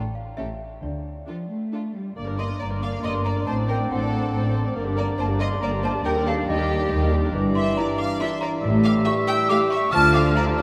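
A worn, slightly out-of-tune celesta rings its bell-like melody over a lush, distant violin section in this sneaky, magical cinematic cue in G minor at 139 BPM in 3/4, with a focused, close second violin line, smooth cello and double bass sections, and a viola section from 0.4 s; a clear solo oboe, a punchy bassoon and a dark, roomy French horn section holding chords join at 2.2 s, and a pure concert flute follows at 2.4 s, the whole ensemble set inside a vast, echoing cathedral space.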